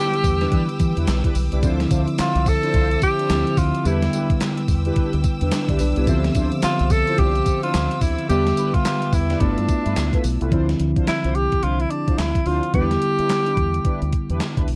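A tenor saxophone, tine electric piano and studio strings open together on this confident, slick slice of new jack swing in D dorian, moving at 108 BPM with a swung sixteenth-note feel. The saxophone carries the melody with light vibrato and a soft attack, its jazz-style tone roomy yet placed up front, while the bell-like electric piano supplies bright, clean accompaniment. Behind them, a lush bowed string section holds sustained chords played sul tasto with a smooth top, sitting low in the mix until it stops at 10.5 seconds as the second section begins. A thumpy, sampler-style drum machine sits forward with handclaps, hi-hat, tambourine and a gated-reverb snare, joined by a deep, round fingered electric bass. Mellow synth brass stabs with chorus, phaser and a filter-swept sawtooth edge thread through chords moving among Em7, Dm9 and G13, all within a dark, warm production with little reverb.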